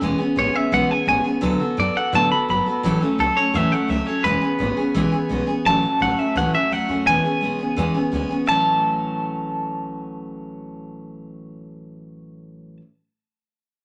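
A moderate studio room frames this rollicking, rowdy rockabilly cut from a longer piece. A full-bodied, fresh-strung dreadnought acoustic guitar picks the chords up front, while a woody, thumpy pizzicato upright bass with gut strings sits darker underneath. From 0.4 s, a twangy, compressed clean electric guitar carries the bright, picked lead through spring reverb, with finger squeak audible on the acoustic.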